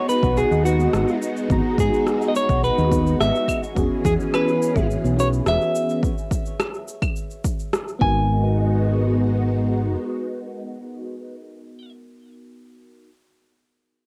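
A hazy home-cassette sound with a modest booth ambience frames this smooth, warm cut from a longer sunset chillout piece in a straight 4/4. A bright, twangy clean electric guitar carries the melody up front, roughened by vintage 12-bit sampler grit and tape and trailed by analog delay, while a round, dark fingered electric bass with tube saturation anchors the low end. Behind them, a soft FM electric piano with chorus supplies full-bodied accompaniment, a silky string machine holds phased, ensemble-chorused chords, and a very quiet, woody kalimba picks out arpeggios. The drums pair an overdriven, punchy electronic kick with an electronic shaker, rim click and claves re-recorded in a large room, and they fall away at about 8.0 seconds. The harmony moves from G#m7 to E69, pauses on a chordless moment at 6.0 seconds and returns to G#m7, after which the parts thin out and the electric piano sounds last, ending at 13.1 seconds.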